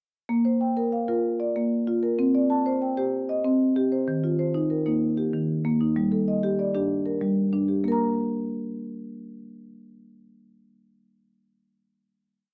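A solo marimba played with soft mallets carries this short, complete piece in a southern African traditional style, its woody, round rosewood tone sitting up front in the mix as it spins an interlocking ostinato modeled on mbira cycles. The mood is hypnotic and warm, moving at 127 BPM in a straight 12/8 in Bb major, with the marimba ranging from Eb3 to Bb5. The cycle passes through Bb, Cm, Eb and Gm before the harmony drops away at 7.8 seconds and a final note rings until the playing ends at 11.7 seconds. The production is dark and warm, with light reverb giving the mid-forward bars a gentle halo.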